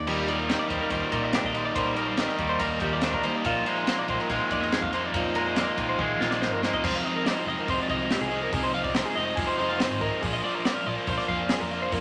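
A straight 4/4 pulse from a crisp fusion drum kit drives this bright, playful slice of math rock and midwest emo, cut from a longer piece. The kit has a punchy kick, high-tuned snare and dark cymbals, and its fill from 6.0 to 6.8 seconds leads into a second section. Up front, a double-tracked overdriven electric guitar carries the riff, while a compressed twelve-string electric guitar picks arpeggios above it and a fingered electric bass adds a warm, amped low end. A clean, twangy electric guitar sits in the background as accompaniment until 8.5 seconds. The harmony moves from Ebmaj7 and Bb7sus4 to Fm7 and Bb, heard in a studio room with moderate ambience.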